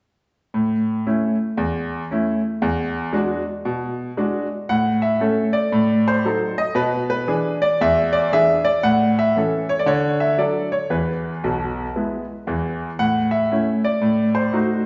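A jaunty swung 4/4 pulse drives this exuberant stride jazz passage, cut from a longer piece and played by a solo grand piano from 0.5 to 14.9 seconds. The piano sounds brilliant yet worn and sits up front, ringing into a spacious recital-hall reverb with the highest frequencies dulled. Its harmony moves from the home chord through an E9 into a second phrase at 4.7 seconds, where a diminished chord, E7 and a D-to-E turn lead back home before one more diminished colour.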